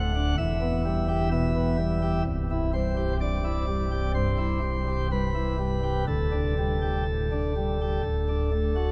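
A reverent, majestic classical chorale for solo chamber organ, moving at a stately 63 BPM in straight 4/4 and tuned slightly below standard pitch at A4 = 439 Hz. The full principal chorus sits up front with a crisp chiff, spanning from C1 up to F#5 as the harmony moves through E minor, C, a suspended D and its resolution to D. A long, wet cathedral reverb of 5.2 seconds wraps this brief fragment in a dark, enveloping acoustic.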